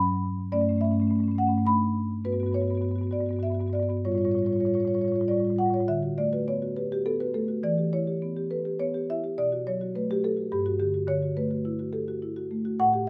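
A moderate stone-room reverb, lasting about 1.2 seconds, gives this recording a resonant, spacious sound around a single instrument placed up front. This is a contemporary classical piece for solo marimba, hypnotic and flowing, set in D major in 3/4 at 104 BPM with a rubato feel, and tuned slightly high to A4 = 441 Hz. Played with soft mallets on padauk bars, the marimba sounds woody, mellow and round, with a mid-forward presence across a range from G2 to B5. The opening passage drifts through colourful harmonies such as Gmaj7#11, A7/G, Gadd9 and Aaug7 before settling onto D6 at 5.9 seconds. From there the second passage moves through Em, B5 and G5 to a closing D69 at 11.1 seconds, in a 13.1-second cut from a longer piece.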